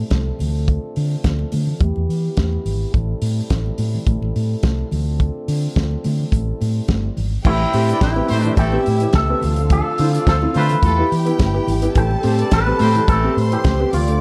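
A mellow, distant French horn section holds soft-edged sustained chords in the background as a round, amped fingered electric bass and a dry soul drum kit with a fat snare, tight kick and dark cymbals set up a straight 106 BPM disco groove in A minor, with high-tuned, hard-hand congas tucked behind. The chords cycle through Dm7, Em and Am7, giving the danceable cut a glamorous air inside a small, dark-sounding room. At 7.5 seconds the arrangement fills out: a twangy, picked electric guitar run through an envelope filter and spring reverb takes the melody up front, while a grand piano adds accompaniment. A lush, bowed studio string section with vibrato carries a second line high above, entering at 7.4 seconds. A clear, vintage pop-style horn section with octave doubling punctuates the passage with stabs until 13.3 seconds, and the piece is cut from a longer performance.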